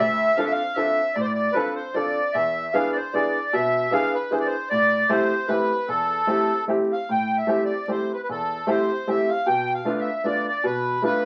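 A lilting waltz pulse in three, its eighth notes lightly swung, drives this short musette piece cut from a longer performance, and the mood is whirling and nostalgic. An accordion with a reedy, sweet voice and light tremolo tuning carries the melody up front for the full 11.3 seconds, staying in a middle-to-high register. Beside it, a woody upright piano plays the accompaniment from the low bass up into the middle range, also close and present throughout. The harmony moves through Dm7, E7 and Am7, and a second section begins at 7.1 seconds before arriving on Bm7b5 at 9.5 seconds. A moderate studio ambience surrounds the pair, and the sound carries the crackle of a very old 78 rpm record.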